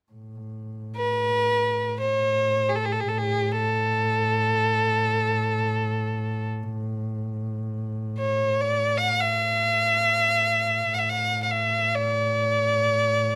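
In free time, this short cut of Arabic music in maqam huzam on A carries a warm, festive mood. A dark, woody bowed double bass holds a low drone on A from 0.1 s, and a rich, focused bowed violin with vibrato enters up front at 1.0 s to carry the melody, touched by a slapback echo. The sound is dry and open-air, with the bass sitting well beneath the violin.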